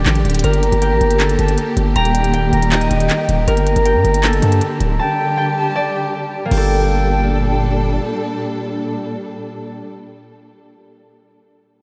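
Lush bowed strings, ringing fingerpicked harp and a punchy, saturated 808 bass open this dark, eerie trap fragment together, set in G minor at 158 BPM with a half-time feel. The symphonic strings hold sustained chords with vibrato and a soft attack, sitting close and up front, while the acoustic harp's arpeggios pass through a low-pass filter and tape echo. The trap kit adds crisp electronic hi-hats, handclaps and crash cymbal at a lower level, and an airy, reedy flute carries a second line high above, its tongued straight tone trailed by tape echo. The harmony circles Gmadd9, Eb and Dsus4, with a break starting at 5.0 seconds before the music returns to Gmadd9, and the drums stop at 6.6 seconds. A huge ambient reverb soaks the mix in a dreamy haze, and the heavy, fast-attacking, decaying bass stays prominent until it drops out at 8.0 seconds.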